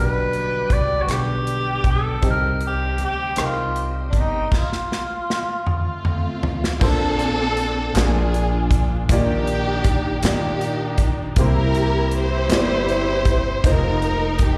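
A clear tenor saxophone with scooped notes and slapback echo opens this slow, hopeful 6/8 gospel excerpt in Bb major at 53 BPM. Beneath it sit an intimate upright piano with audible action noise, a thumpy pizzicato upright bass, and a bright, shouting tonewheel organ on slow rotary speaker in the background that drops out at 4.5 s. A punchy, airy country drum kit joins almost at once, and distant, crisp handclaps come and go in a large room. During a drum fill, a lush, bowed string section with portamento takes up the melody from 5.7 s, while the sax stops at 6.5 s, and the harmony moves through rich chords to an F7sus4.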